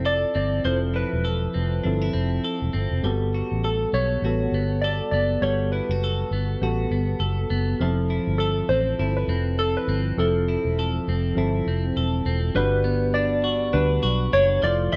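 Indie pop with a dreamy, sunny swing, where detuned analog keys carry the melody through lush chorus and slapback echo over twangy, compressed clean electric guitar with subtle chorus and vibrato, gentle electric-piano-like synth keys softened by chorus and a cassette-tape haze, and a punchy, foam-muted fingered bass sitting up front in a small room, all drifting between Fmaj7 and Gmaj9 before a shift to Gmaj7 at 12.6 seconds.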